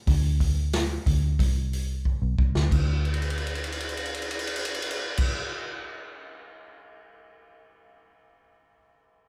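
The recording has the natural sound of a band playing live in one room, with a light reverb. This short classic rock clip, cut from a longer piece, has a driving, confident feel in a straight 4/4. A vintage drum kit sits up front, with a punchy kick, a medium-tuned snare and dark cymbals across crash, hi-hat and ride, all with a rolled-off top end. Beneath it, a vintage fingered electric bass, foam-muted and amped, gives a round, dark low end in a narrow register. The drums break into a fill at 2.1 seconds, and further fills run through much of the second section. The bass stops at 5.3 seconds, leaving the kit to carry on alone until 6.8 seconds.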